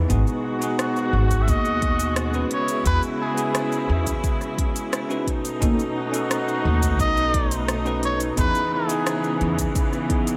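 Sunset chillout at 87 BPM in a straight 4/4, this sunny, relaxed excerpt from a longer piece moves through G#m7, E6, B7/D# and C#m7/E. A bell-like tine electric piano with a clean, bright tone and a touch of delay carries the accompaniment, while a rich studio string section holds smooth, bowed chords with light vibrato beneath it. A woody pizzicato upright bass, given a little tube saturation, anchors the low end and stops at 9.7 s. The deep house drum kit brings smooth hats, cabasa and rim click, layered over a deep electronic kick drum that sits forward in the mix. From 0.5 s a soft, veiled trumpet with a cup mute plays a punchy pop-style solo melody with light vibrato and tape echo. Moderate plate reverb soaks the whole mix in a dreamy haze.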